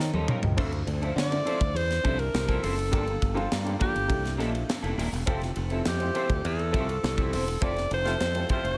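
A polished studio sound with a small room's reverb frames this breezy, urban slice of 1980s jazz-funk pop, moving in a straight 4/4 and cut from a longer piece. It opens on a crisp fusion drum fill, the kit up front with an airy, high-tuned snare, tight kick, hi-hat, ride, crash and toms, all bathed in gated reverb, while a bright, growly fingered electric bass sits equally forward. A warm, intimate baby grand piano with audible action noise and lush chorus supplies the accompaniment, and a clean, dark electric guitar with analog chorus picks out a riff in the background. From 1.2 seconds a clear alto saxophone carries the melody with pop-style vibrato over rich extended chords that settle from Dm9 through Gm9 and C13 to Fmaj7. A band accent lands at 7.6 seconds, and at 8.0 seconds a dark, soft-attacked horn section with a vintage, jazz-style tightness slips in behind with a second line.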